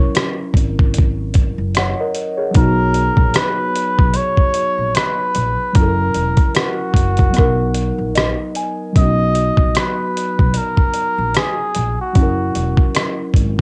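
A cup-muted trumpet and soft, felt-like synth keys open this mellow, cosy lo-fi hip hop fragment together, cut from a longer piece. The trumpet carries the melody up front in a veiled, breathy jazz voice with light vibrato and a smooth top. Beneath it, the keys sit dark and intimate, blending triangle and sawtooth tones with a noise layer, their fast-attack notes decaying through chorus and cassette-tape colouring. A dusty, sampler-style drum kit arrives almost at once, gritty and compressed with a thumpy kick, hi-hat and rim click, re-recorded in a large room and placed up front, also coloured by cassette tape, all in a gently swung 4/4. A woody pizzicato upright bass with steel strings joins at 0.5 seconds, holding the low end under chords that move between F#7 and Bmaj7. The keys play a short fill from 7.8 seconds, just before the phrase repeats, and this home cassette recording carries a light reverb.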